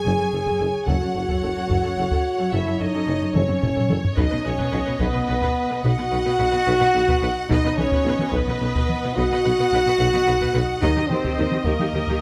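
A chamber violin section carries a smooth, vibrato-laden melody over a more distant, lush symphonic violin line, intense violas and a mellow, up-front French horn section holding sustained chords, with rich cellos, double basses and a soft-attacked tuba anchoring the bass from the start of this epic, relentless orchestral film-score passage in 12/8 at 72 BPM. Close, dry taiko drums struck with heavy sticks enter at 0.5 s and push through a fill between 3.4 and 4.2 s, as the harmony moves from Gbm to B and later to Eb. A moderate scoring-stage reverb surrounds the ensemble, and the clip is cut from a longer piece.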